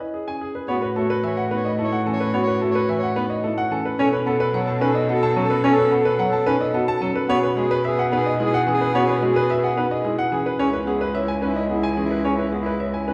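Propulsive and hypnotic, this short cut from a longer minimalist classical piece moves at 109 BPM in a straight 3/4, tuned to A4 = 438 Hz. A clear concert grand piano sits up front with the melody between G#4 and A5, while a marimba struck with soft mallets spins round, dark arpeggios from C#4 to C#5, both sounding from 0.0 seconds. At 0.7 seconds the rest of the ensemble enters: a mellow soprano saxophone with a smooth top adds a second line, a warm, vintage-toned bass clarinet fills in the accompaniment, and a single bowed cello supplies a rich, distant bass with vibrato. The harmony turns from C#m7 through A69, B7(omit 3) and Eadd9/B before settling back on C#m7. A wet recital hall reverb, like a church or concert hall, surrounds the ensemble through to 13.1 seconds.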